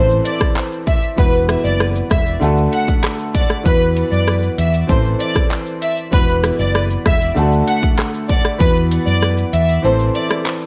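Dry and gritty, this sultry, hypnotic dancehall excerpt at 97 BPM sets a dark, vibrato-rich bowed violin section with tape echo up front on the melody over a clear, intimate baby grand piano with audible action noise and sidechain pumping, a round, amped hollow-body fingered electric bass with tube saturation, and a punchy, layered electronic pop kit of kick, metallic hi-hat, handclaps, rim click and shaker, cycling through Am, Esus2 and D until the kick drops out at 9.8 seconds.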